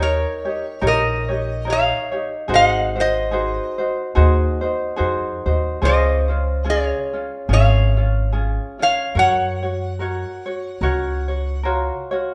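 A moderate recital-hall reverb surrounds this sunny, dreamy Hawaiian piece, cut from a longer work, moving at 72 BPM in 4/4 with a gentle swing on the eighths in D-flat major. Up front, a metal-body resonator slide guitar carries the melody with a bright, nasal, metallic tone played with fingerpicks, while a fingerpicked ukulele adds light accompaniment and a pizzicato upright bass on steel strings gives a dark, woody foundation. The harmony drifts from Eb7 and Ab7 to Dbmaj7 and Gbmaj7; the slide guitar falls away at 11.6 seconds, the bass follows at 11.9 seconds, and the ukulele rings on to 12.3 seconds.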